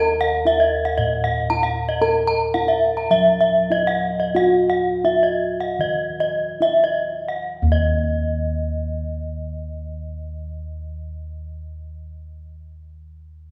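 Shimmering and ceremonial, this short excerpt of Balinese gamelan moves in a straight 4/4 between 64 and 116 BPM, easing back from 2.0 to 7.5 seconds as a bright, ringing bronze metallophone, struck with a horn mallet and alive with the beating of its paired tuning, spins arpeggios up front over mellow, round bossed gongs played with padded beaters in a boxy space, the whole sound carried in a reverberant recital hall.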